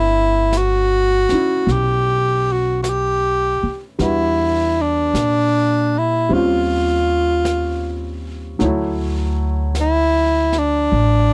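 The excerpt opens on a breathy, close-miked tenor saxophone carrying the melody up front, its scooped notes sitting between D4 and G4, with a clear, slightly worn concert grand piano and a woody, dark pizzicato upright bass beneath it. This is a romantic, tender jazz ballad at a slow 52 BPM in 4/4, with a gentle swing on the eighth notes. At 0.5 seconds a brush drum kit joins quietly, with brushes on a high-tuned snare and hi-hat sitting low in the mix beneath the other parts. The piano, with its deep natural bass, moves through a G6/9 to Em7, then an Eb13 and a Dmaj7 at 8.6 seconds, while the steel-string bass stays low and up front. The sound is dry and intimate, like a close 1970s studio session with little reverb, and the passage is cut from a longer piece.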